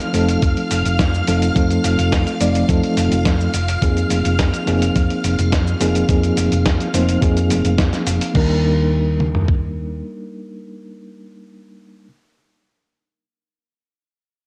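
A reedy, mellow electric piano sits up front with a fast tremolo, sidechain pumping, tape echo and cassette grit, carrying this sunny, groovy nu-disco excerpt from the start until 12.1 seconds. Lush sawtooth string-machine chords with ensemble chorus pump beneath it, while a dusty, compressed sampler-style kit re-recorded in a large room adds a thumpy kick, fat snare, toms, hi-hat, cabasa and crash, and a dark, round hollow-body bass with tube saturation holds down the low end. The strings drop out at 8.4 seconds as the harmony settles onto Ebmaj7, all within a homespun cassette sound with light digital ambience.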